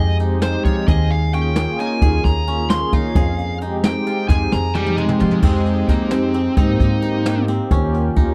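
Set in a straight 5/8, this intricate, tense progressive instrumental opens with a smooth, overdriven electric lead guitar soloing over bright, fingerpicked koto arpeggios, both carrying tape echo, while a woody, thumpy pizzicato upright bass sits up front. A detuned sawtooth analog pad with chorus and a brushed jazz kit, distant and roomy with dark cymbals and a boomy kick, join almost at once, and the drums play a fill from 4.3 to 5.4 seconds before the guitar drops out at 7.4 seconds. The recording has little reverb, and the harmony moves from Fm7 and Eb7sus4 toward Abmaj7 and Eb7.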